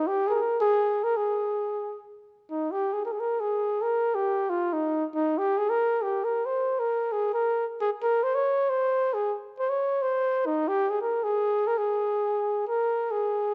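A 3/4 metre at 136 BPM with a straight feel sets this Mexican folk piece in motion, here heard as a short cut from a longer work in Ab major. The mood is festive yet romantic, carried entirely by a lone trumpet that plays from the start to 13.5 seconds. Its tone is dark with a smooth top, shaded by light vibrato and shaped in a classical style, ranging from Eb4 up to Db5. The trumpet sits up front, captured by close, detailed microphones that reveal the grain of the playing. A moderate recital hall reverb with a 1.6-second decay surrounds the solo line, lending it an open, resonant space.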